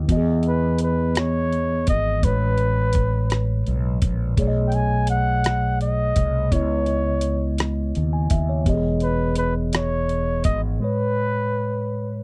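Sensual and unhurried, this slow six-eight R&B cut in E major moves at 56 BPM through lush chords from Emaj7 and Amaj9 to B13 and C#m9, with a mellow tine electric piano carrying the harmony and adding a short fill at 11.9 seconds. A punchy fretless bass with lush chorus holds the low end until 10.8 seconds, while a gritty, compressed sampler-style drum kit with a thumpy kick, hi-hat and rim click sits up front. A breathy flugelhorn enters at 0.5 seconds to take the jazz-style solo melody with light vibrato and scooped notes, all captured in a dry, close 1970s-style studio sound.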